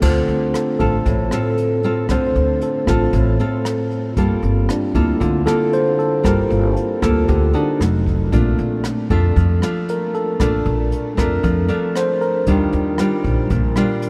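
A clean tine electric piano sits up front, taking a solo across the whole 14.1-second excerpt with a tone colored by its built-in speakers. This is an intimate, smooth bossa nova at 116 BPM in a straight 4/4. A fingerpicked nylon-string guitar in a warm, classical style shares the front of the mix as accompaniment, while a pizzicato upright bass with a woody, steel-strung sound holds the low end until 13.7 seconds. Jazz brush drums, recorded in a studio room, play at a lower level, with shadowy cymbals, a boomy kick, hi-hat, crash and rim clicks. The harmony moves from Dm7 through Gm9, F7b9 and Bbmaj7 before arriving on Ebmaj9 at 12.5 seconds. A huge ambient reverb soaks the whole mix, giving it a dreamy quality.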